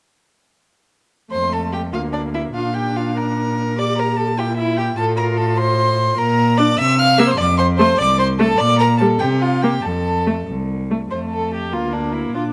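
Classical-period string quartet movement in F major, quick and spirited at 99 BPM in a lilting 6/8 with a rubato feel, cheerful throughout this short passage cut from a longer piece and tuned slightly high at A4 = 445 Hz. The first violin carries the melody up to F6 over the second violin's inner line, the viola's accompaniment with light vibrato, and an up-front cello bass, all four bowed by single players with reedy gut-string tone in period style, entering together at 1.3 s. Close, detailed microphones and light reverb capture the intimate sound as the harmony moves through F, Bb and C7sus4 cadences back home to F.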